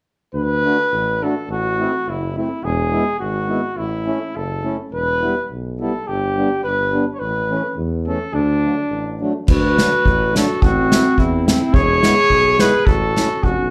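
A mellow, roomy trumpet carries the melody up front in this bouncy, jolly alpine dance-band excerpt in 2/4, backed from the start by a clear tuba bass line and a reedy, round accordion accompaniment, with slapback echo on both trumpet and accordion. At 9.5 s the opening section repeats as a dark clarinet adds a second line, also with slapback echo, and an airy acoustic drum kit with a punchy kick comes in up front. It sounds like a live gig heard through the venue's PA, with moderate club reverb.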